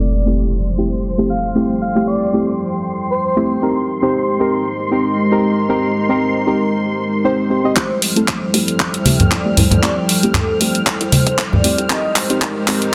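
A dense, heavily limited deep house excerpt at 116 BPM in F major, soulful and relaxed, opens with an up-front electronic impact, pumping chorused chord stabs, a dark detuned analog pad under a filter sweep, a silky phased string machine, a warbling lo-fi tape-like pad and a brief airy, dreamy lead, then at 7.8 seconds an up-front house kit with handclaps and hi-hat, an overdriven deep kick, a hollow knocking FM bass and a round horn-like lead arrive for the build-up and drum fill, with bright saturated congas between 9.1 and 11.6 seconds as Fmaj9 and Abmaj9 alternate under a moderate plate reverb.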